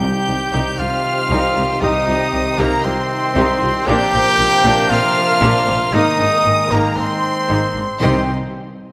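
Dramatic and dark, this cinematic orchestral excerpt sets a lush, vibrato-rich violin section melody high above a pure-toned concert flute, a second violin line and a smooth viola accompaniment, while a distant French horn section and background trombones hold sustained chords, an up-front trumpet punches out stabs, clear cellos and woody double basses carry the bass, and hard-mallet timpani strike only at 0.0 s and again at 8.0 s, the orchestra set in a wet scoring-stage reverb.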